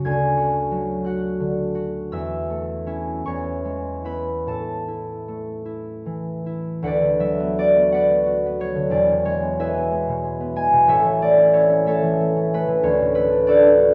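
In a rubato 6/8, a solo concert harp plays a serene, graceful classical excerpt, its bright, thumb-plucked tone ringing up front from E1 to G#6 over chords moving from D through A/E and E to A, then shifting to Bm/D at 6.9 s before returning to A and arriving on D, heard in a moderate recital hall reverb within a dark production.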